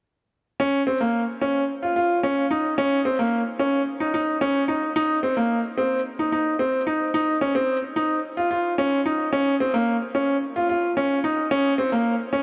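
A straight 4/4 pulse at 110 BPM carries this melancholic, intimate electronica fragment in Bb minor, tuned slightly low to A4 = 439 Hz and cut from a longer piece. A brilliant concert grand piano plays a riff between Bb3 and F4 from 0.6 to 12.4 seconds, its tone bright with a deep bass and placed up front, trailed by tape echo. The whole fragment sits in a huge ambient reverb with an 8.6-second decay.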